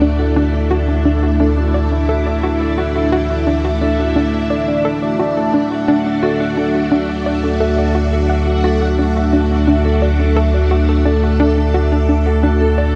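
Ambient excerpt at 87 BPM in D major, cosmic and expansive, where a lush vintage string machine holds sustained chords up front over a round, deep analog bass on D2, a hollow, bouncy square pluck riff with chorus and delay sits in the background, a dark pulsing gated texture hums on E5, and a metallic, ringing vibraphone spins delayed arpeggios from 0.2 to 12.7 seconds, all bathed in a moderate shimmer reverb with a dark production.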